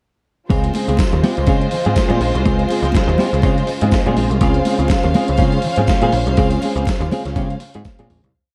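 Dark, warm production with light reverb gives this short, complete disco piece a cozy, lived-in glow as it grooves in Db major at 122 BPM, with a slight swing on the sixteenths and a danceable, celebratory mood. A dusty, sampler-style drum kit sits up front with a thumpy kick, medium-tuned snare, hi-hat and toms, driving a four-on-the-floor beat with open hats on the off-beats, while a growly, punchy picked electric bass plays a syncopated disco line beneath it. A clean electric guitar with a vibrato effect adds choppy sixteenth-note accompaniment, and a lush violin section with a smooth top carries a second line of swelling long notes. Beneath them, a very quiet, woody string section bowed sul tasto holds a sustained pad over a Dbmaj7 chord. Bright, high-tuned congas with a slap on two and open tones on four, plus a jingly vintage tambourine in the background, fill out the percussion as the piece fades from 6.4 seconds and closes on a drum fill at 7.9 seconds.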